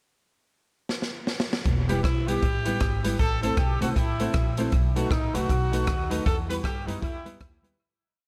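Set in studio ambience, this short, driving and mischievous ska piece at 157 BPM in E harmonic minor swings as a punchy, hall-toned big-band drum kit with dub echo plays a fill from 0.9 seconds before settling into a ska beat with side-stick backbeat, a growly, dark pizzicato upright bass walks with chromatic approach notes from 1.7 seconds, a clear horn section with light vibrato and dub echo states catchy hook phrases, a clean, compressed semi-hollow guitar with subtle chorus chops the off-beats alongside an intimate, woody upright piano whose action noise is audible, and the piece fades out from 6.3 seconds.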